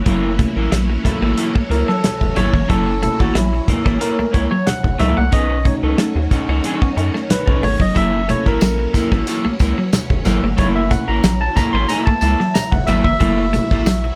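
This playful, strutting funk excerpt opens at once with nearly the entire band: a damped 70s drum kit sits dry and up front with a tight kick and medium-tuned snare, while a rubbery square bass bounces underneath with a hollow, resonant filter pluck. A barky tine electric piano, heard through a combo amp, takes the solo role with bright stabs across the whole passage. Two electric guitars fill the middle, one clean, compressed and tucked in the background with a subtle chorus on its riff, the other dark and slightly broken-up as it plays accompaniment. Behind them a swirling vintage string machine holds sustained chords through ensemble chorus and phaser, and low-tuned congas played with soft hands sit distant and very quiet. A jingly tambourine joins at 8.0 seconds, over harmony that moves from F#7#9 to B9 and back, all set in a moderate club reverb.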